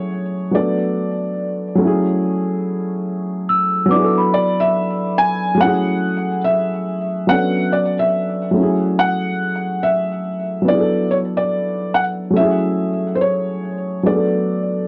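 Hip hop at 71 BPM in F# minor with a 16th-note swing, this hazy, reflective excerpt pairs a soft, felt-muted upright piano melody carrying a low-pass filter and tape echo over a dark, woody upright piano accompaniment cycling through F#m7, Bm7 and E7sus4 chords, while a delicate, bell-like celesta line with its own tape echo appears only between 3.5 and 5.4 seconds, all set in moderate studio reverb on a dry, gritty cassette-tape recording.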